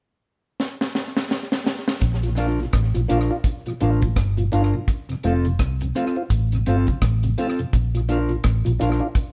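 Warm and uplifting, this excerpt of roots reggae at 84 BPM in Bb major swings gently, opening with a drum fill from 0.6 seconds on a deep, dry kit with a high-tuned snare, tight kick, hi-hat and rim click, touched by tape echo. At 2.0 seconds the band arrives over a Bb, F, Bb progression: a dark, foam-muted fingered electric bass sits round and punchy up front alongside the drums, and a mellow tonewheel organ, with key click and slow rotary speaker, follows at 2.2 seconds, joined at 2.4 seconds by a clean, fingered electric guitar, the two filling the middle. A cabasa rustles in the background from 2.0 seconds, and light reverb gives the feel of a band playing live in one room.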